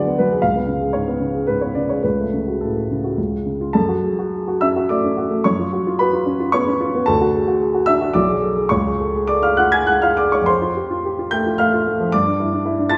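A warm baby grand piano carries this brief romantic character piece alone, sounding natural and up front while the recital hall around it rings with a wet reverb heard from further back in the room. Set in F# minor and 3/4 with a rubato feel, the music moves at roughly 100-122 BPM, its mood brooding and bittersweet. The piano ranges from B1 up to A6. An opening idea gives way at 3.7 seconds to a second section that wanders through shifting harmonic turns, including a G#dim/B chord and a surprising shift to F near 10.5 seconds. Cut from a longer work, the passage stops at 13.0 seconds after arriving on an open G5 sonority, leaving the harmony unresolved.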